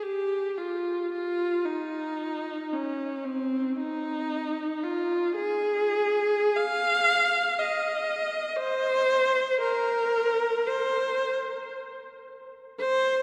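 A lone bowed viola, rich and focused with vibrato and a smooth top, sings a yearning, mournful classical line in free, expressive rubato in three, played up front by one player from C4 to F5 and bathed in a wet cathedral reverb that lingers for 4.1 seconds, in a 13.2-second fragment cut from a longer piece.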